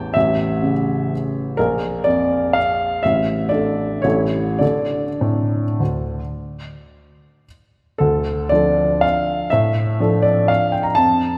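A rubato waltz in 3/4, drifting between 100 and 133 BPM, this nostalgic and elegant classical fragment in D minor is carried by a solo upright piano tuned to A4 = 438 Hz, playing alone from 0.0 to 11.4 seconds across a range from A1 to Bb5. The piano sits up front with a woody, intimate, vintage character, smooth long sustain and audible action noise. The recording, bathed in a wet concert hall reverb with a 2.1-second decay, is heard from further back in the room, and the phrase returns to its opening material at 8.0 seconds, landing on D minor.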